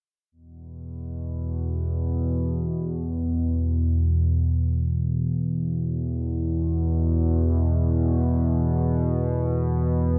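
Ambient in free time, this dark, cavernous passage is cut from a longer piece and rests on a single analog drone that enters at 0.7 seconds and holds its low register until 10.2 seconds. The drone sits up front, a warbling, vintage blend of sawtooth and pulse-wave tone with pulse-width modulation and chorus, rising through a slow attack into sustained notes with a long release. A wet cathedral reverb with a 5.1-second decay surrounds it, giving the sound a vast, hollow depth.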